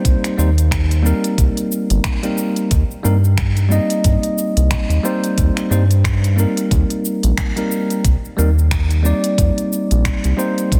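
Sunset chillout with a smooth, warm swing, built on a round, deep analog bass up front, a gritty, thumpy electronic kick, a deep house drum kit of finger snaps, smooth hats, shaker and a softly clipped snare entering at 0.1 seconds, and a bell-like, bright tine electric piano with digital delay moving between Cm7 and Eb6, all set in light reverb and a dense, heavily limited modern master.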